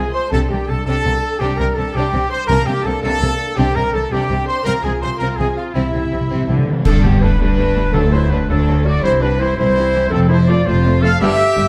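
A lush, roomy scoring-stage sound carries this triumphant, adventurous cinematic excerpt in a heroic film-score style at 111 BPM in 6/8 and C mixolydian, where distant bowed violins sing the melody over clear clarinet, quiet focused studio violins, an airy hollow flute that gives way to a distant oboe at 6.8 seconds, close focused violas, mellow soft-attack French horns holding chords, bright trumpet stabs, rich cellos and woody double basses, round calf-headed timpani with a fill at 5.8 seconds, and up-front dark cymbals with concert bass drum that crest into a band accent at 6.9 seconds.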